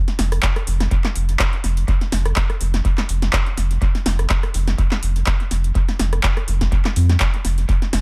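A swung sixteenth-note groove in 4/4 drives this hypnotic, gritty acid house excerpt, cut from a longer piece and running about eight seconds. An analog drum machine enters at 0.1 seconds with handclaps, metallic hi-hats, a rim click and a punchy snare, its hits tape-warm, touched by a short room on the snare, clap and hats, and thrown into dub echo. A round, sine-toned sub bass arrives at 0.2 seconds, sitting up front between F1 and F2 with a fast attack and sustained notes that pump against the sidechain. A deep analog kick joins at 0.4 seconds, re-recorded in a small room for a lightly roomy thump. The mix carries little reverb and leans heavily on echo, giving the pattern a looping pull.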